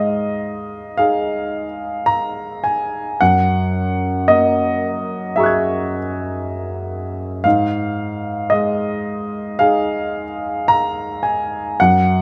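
An Ab5 chord on a warm, present grand piano opens this luminous, hazy fragment of impressionist solo piano music, moving at a rubato 55 BPM in 4/4 through a Gb9 chord at 3.2 seconds and back to Ab5 at 7.5 seconds, with the up-front instrument ranging from Gb2 to Ab6, its long sustain set in light reverb, close, detailed miking and a tuning of A4 = 441 Hz.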